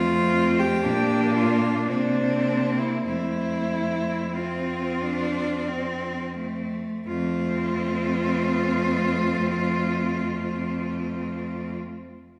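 In a rubato 3/4 that slows through the first 7.1 seconds at 41-67 BPM, this warm, lyrical classical piece in F major, cut from a longer work, sets four bowed cellos in a wet scoring-stage reverb: a rich, smooth, even melody cello with light vibrato, a clear second-line cello, a close, expressive accompaniment cello with soft attack, vibrato and portamento, and a focused bass cello with vibrato, all moving through F, Bb and C9 before settling back on F.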